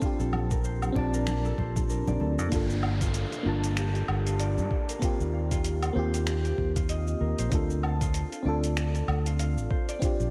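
In this smooth sunset chillout excerpt in G minor at 96 BPM with a swung 16th feel, a thumpy, overdriven electronic kick and a gritty, compressed sampler-style soul kit of finger snaps, hi-hat, shaker and woodblock play from the start, joined at 0.2 s by a dark, round fingered electric bass that sits up front. A mellow FM electric piano, treated with chorus, phaser, tape echo and shimmer reverb, moves through Bbmaj9, Gm9, Eb69 and Dm7, while a bright, thumb-plucked Celtic harp adds ringing arpeggios through the same echo and shimmer. Very quiet congas played with soft hands appear until 2.5 s, when an electronic downlifter runs to 7.5 s, and a lush hall reverb soaks the whole mix in a dreamy haze.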